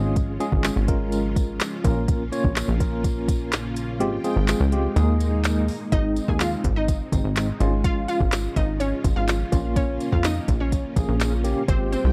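Dance-pop at 125 BPM with an upbeat, euphoric lift, this excerpt opens on a tremolo-laced tine electric piano through a combo amp, mellow string-machine cellos with ensemble chorus, and a punchy, funky analog bass, all breathing with sidechain pumping, while a smooth R&B kit with a soft kick, woody snare, handclaps and tape-warmed hats drives it alongside a jingly tambourine tucked in the background. The kick drops out from 4.0 to 5.9 seconds, and at 5.9 seconds a glassy, crystalline wavetable pluck enters with the melody, carrying chorus and tape echo over the Ab, Db/Ab and Bbm chords. The sound is dry and close, in the manner of a 1970s studio, with a digital ambience around it.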